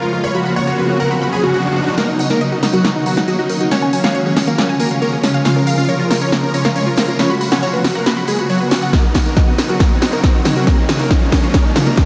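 Soaked in a dreamy hall reverb, this bittersweet, emotional uplifting trance excerpt opens with a quiet, intimate baby grand piano under a filter sweep and a faint electronic riser, while huge, detuned supersaw chords carry the melody over bright, decaying unison pluck arpeggios, both pumping with sidechain and trailing tape echo, until a big-room drum kit of punchy snare, crisp hats and toms joins a jingly, distant tambourine at 2.0 s for a build-up with a drum fill, and a layered, up-front electronic kick drives in at 8.9 s.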